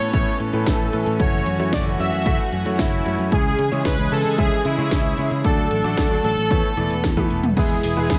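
An excerpt of sunny, danceable italo disco at 113 BPM opens with a bold, fat analog synth brass lead, detuned and warbling with chorus and delay, over a dark, distant string section holding sustained chords, a growly picked electric bass with tube saturation, and a house drum kit with a cracking snare and metallic hats. From 0.1 seconds a punchy, tape-warm electronic kick drum drives the beat while a clear grand piano adds stabs, all moving through Aadd9, F#m7, C#m, D and Esus4 before landing on E. A drum fill at 7.0 seconds closes the section in a light reverb.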